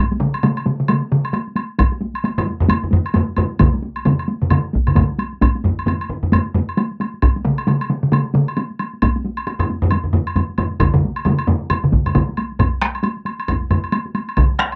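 Swung sixteenths drive a steady 4/4 pulse in this powerful, driving Japanese traditional taiko drum ensemble piece, heard as a cut from a longer work. Taiko parts struck with hard and heavy sticks, most of them up front, sit in a small, dry booth, one with a vintage, band-limited tone, while a woody woodblock sits lower in the mix. One drum part drops out between 6.7 and 9.6 seconds before rejoining, and a new section arrives at 12.6 seconds.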